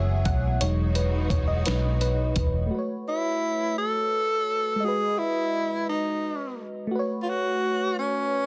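Slow six-eight R&B at 57 BPM, sultry and yearning, opens on a mellow, chorused FM electric piano carrying the lead over smooth bowed strings, a round, foam-muted electric bass and a gritty, tape-warm sampler-style drum kit with a thumpy kick; the drums drop out at 2.5 seconds and the strings and bass at 2.7, then a breathy tenor saxophone with vibrato and scooped notes takes the melody from 3.1 seconds over the piano's soft, decaying chords, in light reverb and a dense, heavily limited modern master.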